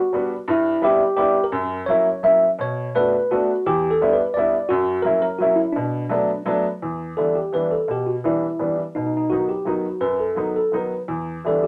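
A clean tine electric piano carries the melody up front, its tone colored by its built-in speakers, in this whirling, bittersweet musette waltz at 170 BPM in 3/4. A woody, intimate upright piano, also up front with its action noise audible, supplies the accompaniment through Em7, F#7 and Bm7 changes in B minor before the key turns to E minor at 6.8 seconds. A short club reverb wets the sound of this brief cut from a longer piece.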